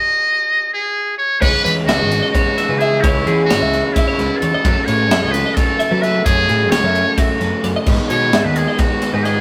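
A metal-muted trumpet opens alone for the first 1.4 seconds over a stop, its buzzy, thin tone sitting up front with vibrato and scooped notes in a vintage pop style. At 1.4 seconds the full band comes in for a playful, intricate stretch of math rock and midwest emo, driving at 260 BPM in 7/8 with a straight feel. A bright, twangy twelve-string electric guitar spins clean, compressed arpeggios high in the register, while a dark, double-tracked overdriven guitar churns a riff underneath. A growling picked bass with overdrive anchors the low end, and a crisp, polished fusion kit with a high-tuned snare, punchy kick, crash and ride cymbals sits up front. The harmony moves from C#m11 to F#m7 and then G#m, all captured in a rough rehearsal-room recording with a small, wet room reverb, cut from a longer piece.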